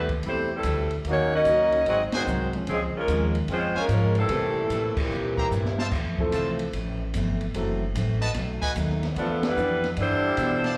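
An energetic, joyful big band swing excerpt at 148 BPM, caught live through a club PA, where an up-front, clear saxophone section carries the melody over a dark trombone second line, brilliant trumpet stabs entering at 2.1 seconds, a background baby grand piano and bright picked acoustic guitar, a woody pizzicato upright bass, and an open jazz kit with dark cymbals, a high-tuned snare and a boomy kick that plays a fill at 5.5 seconds, while the saxophones and trombones drop out and return at 9.2 seconds.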